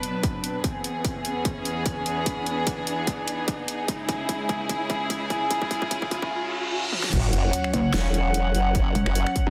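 Soft-attack strings float over sidechain pumping, a distorted electronic kick and a dubstep kit with a huge snare and bright hats, while a riser builds beneath through Bm, E and C#m at 148 BPM in half-time until a reverse cymbal crashes into an aggressive, menacing drop at 7.1 seconds, where an overdriven, formant-sweeping wobble bass bursts up front on F#5, joined at 7.7 seconds by a detuned, pulsing and saturated one, in this short, dense, heavily limited fragment of heavy wobble dubstep.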